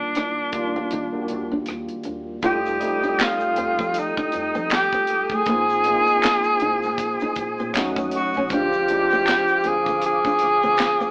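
A band playing live in one room comes through with an AM radio sound and moderate studio reverb on this smooth, late-night neo-soul R&B, swung on the 16ths, cut from a longer piece. Up front, a breathy, whispered tenor saxophone carries the jazz-style melody with vibrato and scooped notes over a clean tine electric piano, a small fingerpicked nylon-string guitar line, a dark, round fingered bass in the background, and an airy, polished funk kit with a high-tuned snare, tight kick, hi-hat, rim clicks and handclaps, with a break from 0.9 to 2.4 seconds. At 2.4 seconds a mellow, flute-like tonewheel organ enters with percussive sustained chords through chorus vibrato and a slow rotary speaker, joined by a very quiet egg shaker and finger snaps as the harmony moves from Ebmaj7 through F9 and Bb9sus4 to half-diminished chords.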